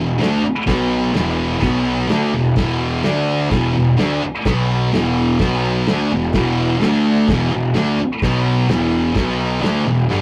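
A rough rehearsal-room sound with saturated grit and a short, wet booth ambience gives this 10-second cut from a longer garage rock piece a menacing, raw edge. At 127 BPM in a straight 4/4, a thick, double-tracked fuzz guitar sits up front, its bright, distorted riff picked across power chords that circle E5, B5 and D5. Beneath it, a picked electric bass plays with a growly, punchy overdrive that sounds both direct and amped. A cloth-damped drum kit enters at 0.2 s and stays in the background, its dry, thuddy tone coming from a tight kick, a medium-tuned snare and dark crash cymbals with a rolled-off top. The result is a dense, scuffed wall of fuzz, with the guitar riff carrying the weight of the track.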